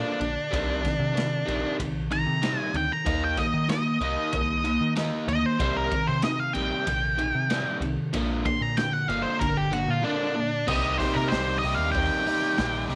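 A fuzzed, dark lead guitar opens this brooding, swaggering classic rock excerpt, soloing up front over a bright, double-tracked overdriven rhythm guitar riff and a round, punchy picked bass, all sounding together from the very start. The raw garage drum kit joins at 0.2 seconds, with a punchy kick, a medium-tuned snare, hi-hat, ride and crash captured in a small, pumping room, saturated and gritty with a rolled-off top. The chords move between Bb and C minor, passing through an Eb power chord, in a straight, steady four-beat groove. The octave-fuzz solo carries the melody until 10.7 seconds, when a new section begins, and the lead drops out at 12.8 seconds while the riff, bass and drums play on briefly. Light reverb gives the whole a compact, close-room sound.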